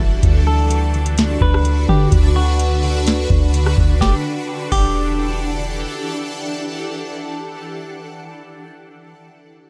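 Melancholic and hazy, this short excerpt of atmospheric cloud-rap moves at 127 BPM in a half-time 4/4 feel in E minor, with a clean semi-hollow electric guitar melody and a fingerpicked concert harp carrying arpeggios in the background, both trailed by digital delay, over a shimmering, ethereal pad whose detuned, granular chords pump against the beat through chorus, phaser and reverb. A soft, round 808-style bass sits up front beneath a booming analog drum machine with a deep kick, tonal snare, metallic hats, rim clicks and a crash, as the harmony moves from D6 to Em11 at 4.0 seconds. The drums stop at 4.9 seconds and the guitar at 5.4 seconds, the bass follows at 5.9 seconds and the pad at 7.0 seconds, leaving the harp ringing on until 7.8 seconds in a digital ambience.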